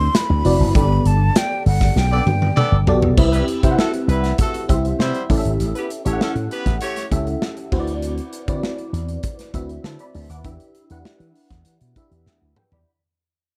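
Polished 1980s jazz-funk pop at 99 BPM in a straight 4/4, glossy and upbeat, cut from a longer piece. A breathy, hollow flute with vibrato carries the brief opening melody over a glassy, bell-like FM electric piano with chorus, a growly, punchy slap bass through an envelope filter, and an up-front studio drum kit with a punchy kick and a pumping room sound; a warm, smooth-topped horn section adds a second line from 2.1 s to 7.1 s. After a band accent and drum fill, the track fades out from 3.2 s through chords such as Cmaj7 and A7, set in a small room reverb.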